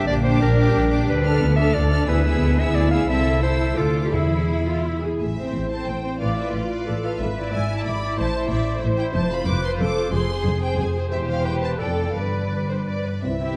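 Dramatic and restless, this classical passage in A minor moves in a rubato 3/4 at roughly 164-189 BPM, cut from a longer piece. A clear violin section carries the high melody with smooth vibrato, while a second, lush violin section and a distant viola section fill the middle with bowed lines. A bright solo clarinet adds its own second line until 4.8 s. Beneath them, an intense double bass section sits up front and a focused cello section plays in the background, while a ringing, fingerpicked concert harp spins arpeggios across its range. A very quiet, round timpani stroke arrives at 4.1 s, and a mellow French horn section touches a brief sustained chord at 13.2 s. The harmony passes through chords such as Bm7b5/D and E7/D, and later F to Fm, before reaching G, set in a moderate concert hall reverb with a dark production.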